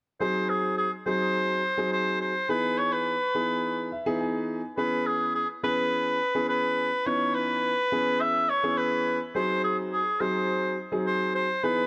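Over a straight 4/4 pulse at 105 BPM, this driving, energetic dance-pop excerpt features a clear, roomy solo oboe carrying a classical-style melody with delay, up front against a deep-bassed grand piano accompaniment that adds a fill from 3.6 to 4.8 seconds, moving through G#7, Emaj7 and C#m7 chords in light reverb, tuned to A4 = 445 Hz.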